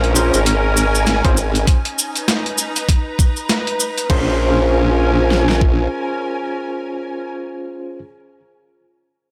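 A wobbling, saturated formant-sweep bass with chorus anchors this playful, swaggering glitch hop excerpt at 99 BPM in Bb minor, swung on the 16ths and moving from Bbm7 to Bmaj7 and back. A gritty, pitched-down boom bap sampler kit with a high-tuned snare and a grainy cabasa open the passage and drop out at about 4.2 seconds, while an up-front pop kit with a knocking kick and fat snare joins at 1.2 seconds. Barky, overdriven tine electric piano stabs with tremolo, 12-bit grit and digital delay sit over a distant, smooth symphonic string section, both pumping under sidechain, set in light reverb and digital ambience.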